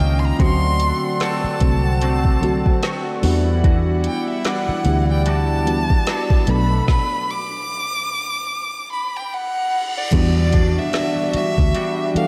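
A close, expressive bowed violin with vibrato and portamento carries the melody over a moody, late-night contemporary R&B groove at 74 BPM in E minor with a swung 16th feel, where a round, foam-muted fingered electric bass sits up front beside a produced drum kit of soft kick, woody snare and metallic hats with 12-bit sampler grit, while a mellow FM electric piano with chorus, a shimmering retro pulse-width pad and a clean semi-hollow guitar playing arpeggios in the background fill out the harmony, the whole mix drenched in lush hall reverb, with a stop from 6.9 seconds, a reverse cymbal and downlifter entering in the background at 9.3 seconds, and the groove returning on Em9 at 10.1 seconds in this section cut from a longer piece.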